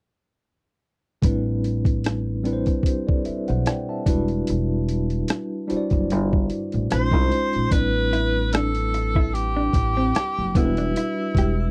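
A smooth, introspective R&B and neo-soul groove in A dorian at 74 BPM, with a lightly swung sixteenth feel, opens at 1.2 s with a tine electric piano under medium tremolo, a woody, dark pizzicato upright bass on gut strings, and a gritty, pitched-down boom bap sampler-style drum kit whose thumpy kick, hi-hat and rim click sit up front. At 6.9 s a clear tenor saxophone takes the melody with vibrato and scooped notes, sounding distant and roomy, and at 7.7 s a slightly broken-up, lo-fi electric guitar through a small old amp adds a picked second line. The recording is dry and close in a 1970s studio style, with little reverb, and is cut from a longer piece.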